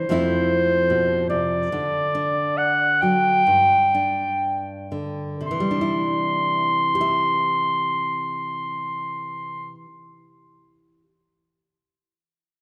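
A clarinet with a soft attack and a distant, roomy classical tone sings the melody of this tender, heartfelt acoustic folk-pop ballad in C major, over a bright, fingerpicked nylon-string guitar with fresh strings and audible finger squeaks, moving through Fmaj7, D, G5 and Cadd9 at 58-76 BPM and slowing over the first 5.4 seconds, all within a lush concert-hall reverb, until the clarinet stops at 9.8 seconds and the guitar carries on alone until this excerpt is cut at 11.0 seconds.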